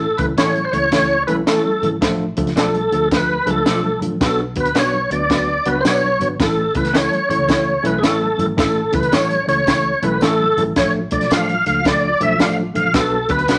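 Warm and danceable, this brief cut of uptempo 1960s-style soul swings in A major at 110 BPM, with an up-front tonewheel organ carrying the melody through light overdrive, chorus vibrato, key click and a slow rotary speaker over mellow tine electric piano, a round, foam-muted picked bass, a dry, punchy compact cocktail kit with a high-tuned snare, slightly broken-up lo-fi electric guitar stabs with tremolo in the background, and very quiet thick-skinned congas and jingly tambourine, all in moderate studio reverb.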